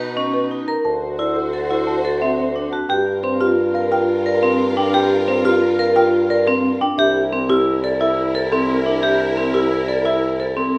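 A ringing, metallic vibraphone arpeggio, struck with hard mallets and shimmering with fast motor vibrato, opens this minimalist classical pattern piece in 6/4 alongside a woody, dry folk marimba melody, lush bowed strings holding sustained chords with vibrato and portamento, and a mellow, smooth solo bassoon on the bass line. The mood is meditative yet urgent, and the harmony shifts from Bmaj7 and D7 into a new section at 2.9 seconds on Gm7, moving to C13 at 7.0 seconds. A wet recital hall reverb surrounds the ensemble in this excerpt from a longer work.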